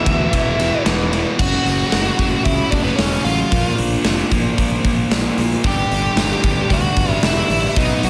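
A big arena sound in a lush hall reverb frames this cathartic, restless quiet-loud alternative rock excerpt: a dark, high-gain lead guitar carries the melody up front, opening with a solo, over a bright, compressed fuzz guitar riff with slapback echo, a faint, twangy twelve-string electric guitar playing arpeggios until 5.6 s, an overdriven electric guitar riff that drops out at 1.4 s, a growly fuzz fingered bass in the background and a punchy, polished big rock drum kit, while a very quiet percussive tonewheel organ with chorus vibrato adds sustained chords from 5.6 s.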